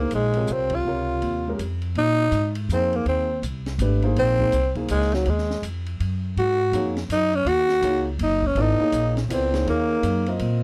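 A brisk 3/4 swing at 163 BPM drives this cool, searching modal jazz excerpt in Bb minor, cut from a longer piece. A growling tenor saxophone carries the melody up front, its raspy, gritty tone marked by scooped notes and a light vibrato. Beneath it, a concert grand piano accompanies with an intimate, vintage sound, its action noise audible, while a woody pizzicato upright bass on steel strings sits close in the mix. An open acoustic drum kit, with dark cymbals, a high-tuned snare and a boomy kick, plays quietly in the background on hi-hat, ride, snare and kick. The band hits an accent together at 0.7 seconds, and the harmony moves from Bbm11 to Bb9sus4 at 2.0 seconds and on to Ab9sus4 at 6.4 seconds. The dry, close 1970s-style studio sound carries only a light reverb.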